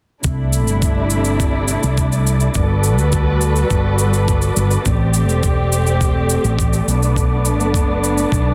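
Relaxed and sunny, this sunset chillout fragment sets veiled, con sordino strings holding lush sustained chords through C69, Gmaj9, Am7 and Bm7 over a round, punchy fretless bass with analog chorus, a gritty, thumpy electronic kick and a mid-forward cabasa with a rolled-off top, while an airy, breathy wind-like noise layer drifts in the background from 0.6 s, captured with light small-room reverb and a dense, heavily limited modern master.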